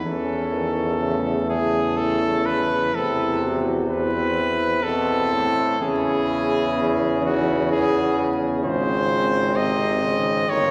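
Serene and hymn-like, this classical brass band fragment flows in a rubato three-four, with a warm, smooth-topped solo cornet carrying the melody up front over a mellow French horn section's tight second line, a punchy, distant trombone section and a roomy solo trombone in the background, and a close-miked tuba with light vibrato anchoring the bass, the ensemble set in a lingering church reverb beneath a layer of vinyl crackle.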